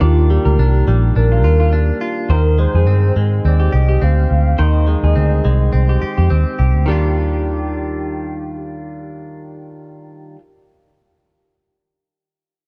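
A lightly swung 16th-note feel at 105 BPM carries this hazy, nostalgic indie pop excerpt in Eb major, where a round, punchy, foam-muted bass sits up front beneath a twangy, compressed direct clean guitar soaked in lush chorus and vibrato, while a slightly broken-up, lo-fi guitar through a small old amp adds a second line with tape echo until 8.6 seconds, a velvety, detuned synth lead carries the melody with analog chorus and tape echo until 6.3 seconds, and a mellow tine electric piano sits in the background for only the first 2.3 seconds, inside a dark, warm production with light reverb and digital ambience.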